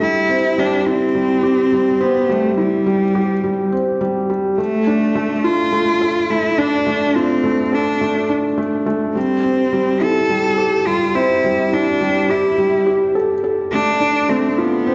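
A clear, focused cello, bowed by one player with vibrato, carries the melody up close over a soft, mellow felt-muted upright piano riff with audible action noise, both parts touched by digital delay and set in a wet recital hall reverb, giving this cinematic, melancholic piano and strings electronica fragment at 105 BPM in 4/4, tuned to A4 = 437 Hz, a rolled-off sound as the harmony moves from Gsus4 through Dm/A and Am7 to Dm7/A.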